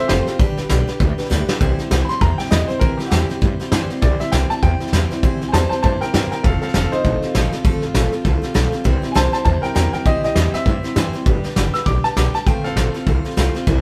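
A swung rockabilly groove at 199 BPM in 4/4 drives this upbeat, rowdy excerpt in C major, cut from a longer piece. A bright, brilliant upright piano carries the melody, and it leads in with a short solo opening before a drum fill at 1.3 seconds carries the band into the main section at 1.6 seconds. A soft brush kit sits up front with a medium-tuned snare, tight kick and hi-hat, sounding natural in a small room, while a pizzicato upright bass with gut strings gives a woody, thumpy bottom end. A picked steel-string dreadnought with fresh strings fills out the accompaniment with a full-bodied ring. The changes move through C, F and G, and the band plays live together in one room under light reverb, the piano dropping out at 13.2 seconds as the others carry on to the cut.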